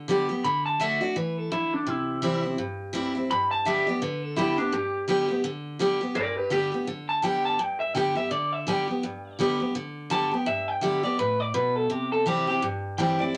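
A twangy, slightly broken-up electric guitar through a small old amp carries the melody from 0.4 seconds and takes a clean solo from 6.2 seconds, riding over a full-bodied, up-front dreadnought acoustic with audible finger squeak in this rollicking, upbeat rock excerpt in G major at 167 BPM with a swung feel, moving through D, C and G chords in a small room with moderate reverb.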